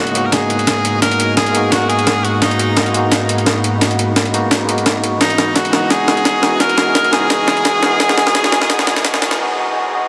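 A dreamy, reverb-soaked mix opens this lush liquid drum and bass cut at 172 BPM in G# minor, where an edgy, forceful tenor saxophone with vibrato and delay carries the up-front melody over a clean tine electric piano, a glassy, ethereal FM pad with ensemble chorus, a gritty, pitched-up, tape-warm jungle sampler-style kit with a medium-tuned snare and hi-hat, and a very quiet knocking electronic kick, moving from G#m9 to C#m11 at 5.2 seconds through a build-up and drum fill into a brief break at 9.4 seconds.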